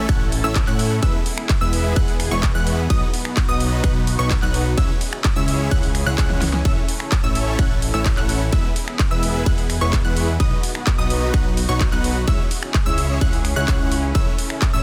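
A punchy, tape-tinged electronic kick sits up front in this triumphant, euphoric stretch of festival progressive house, joined by an overdriven big-room drum kit of finger snaps, handclaps, hi-hat, ride and a huge snare, with a drum fill at 6.3 seconds. Huge, bright supersaw chords carry the riff over a fat, detuned analog bass, while a lush unison pluck spins high arpeggios through digital delay and every synth part, the pad included, pumps with sidechain compression. Behind them a thick, slow-attack pad adds chorus, phaser and vintage 12-bit sampler grit to sustained chords cycling A, E, B and C#m, all wrapped in digital ambience and a dense, heavily limited master.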